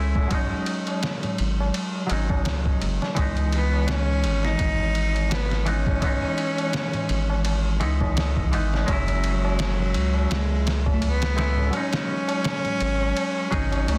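A biting, bowed cello carries the melody up front from 3.5 seconds, its intense vibrato trailed by tape echo, in this smoky, cinematic trip hop excerpt with a lightly swung feel. Beneath it, a clean, picked semi-hollow electric guitar shimmers with tremolo and tape echo, while a round, deep analog bass sits up front and a muffled, pitched-down sampler kit adds a thumpy kick, snare and ride with gritty overdrive. A low-tuned, ringing tabla rings in the background, and the harmony moves from G#7sus4 through C#m9 and F#7(no3) in a dry, dense, heavily limited mix.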